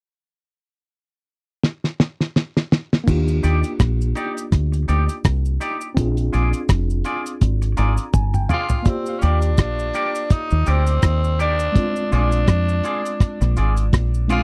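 A raspy tenor saxophone, gritty and full of scooped notes, carries the melody from 8.5 seconds, sounding distant and roomy with tape echo over a smooth, romantic lovers rock reggae groove at 83 BPM in Eb major, with a swung sixteenth-note feel. The cloth-damped drum kit opens with a fill at 1.6 seconds; its fat snare, tight kick and rolled-off top sit up front in a dry, close 1970s-style recording. Around 3.1 seconds a deep, dark fingered electric bass arrives, round and punchy. A worn, slightly out-of-tune electric piano joins just before it, at 3.0 seconds, playing a lightly overdriven accompaniment with slapback echo and a fill just before the saxophone appears. A twangy, clean electric guitar adds stabs with its own slapback echo, and a cabasa shakes softly in the background, while the harmony moves between Ebmaj7 and Bb7 in this passage cut from a longer piece.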